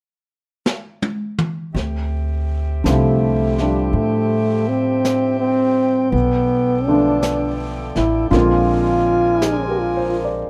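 A slow swung 4/4 pulse at 55 BPM opens this melancholic, wistful jazz ballad in D minor, with a brushed drum fill from 0.7 s on a dark, smooth kit recorded in a small room. Upright bass and a saxophone section arrive at about 1.7 s as the harmony settles on Dm11. The bass is thumpy and woody with gut strings, while the saxophones hold soft-attacked sustained chords with light vibrato. A concert grand piano adds intimate accompaniment with deep bass and audible action noise, and a mellow, close-miked trombone carries the solo melody from 2.9 s, punchy and forceful up front. The chords move through Bm7b5 to Bb9 in this cut from a longer piece, with a touch of reverb over a rough home demo mix.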